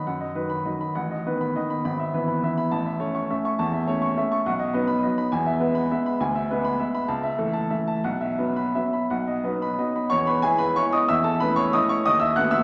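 A rubato 3/4 waltz lilting between 167 and 221 BPM in E major, this graceful, elegant classical excerpt features a solo upright piano with a woody, vintage, up-front tone spanning G#1 to F#6, set in the wet reverb of a scoring stage, and it moves into a new section at 10.1 s before the recording cuts off at 12.6 s.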